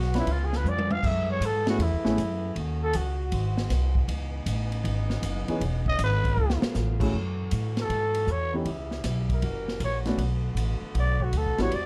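Big band swing at 157 BPM with a sultry, dramatic mood, moving from C# minor to F# minor at 7.1 s in this short excerpt from a longer piece. A raspy, growling trumpet carries the solo melody up front, dropping out briefly before returning at 5.9 s, over sustained chords from a bright saxophone section with light vibrato, a thumpy, woody pizzicato upright bass, and a present upright piano that comps in two stretches. A swinging drum kit with a punchy kick and a polished, airy hall sound adds short fills, and the whole mix sits in a dark production with light reverb.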